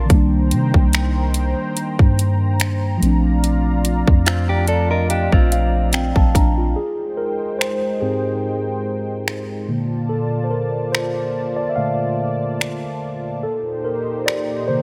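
A trap drum kit of finger snaps, metallic hats and a hard-clipped kick sets a lightly swung 72 BPM pulse in 4/4, with a soft, round 808-style bass sitting deep and up front through the opening 6.8 seconds, in this smooth, dreamy contemporary R&B excerpt in Bb major. A mellow tine electric piano carries the accompaniment over chords moving from Cm7 to Bbmaj7 and Abmaj7, joined by clean, picked electric guitar arpeggios with delay until 6.5 seconds and a detuned, warbling analog pad with chorus and sidechain pumping. The electric piano plays a fill before taking a solo from 6.8 seconds to the end, all set in a digital ambience.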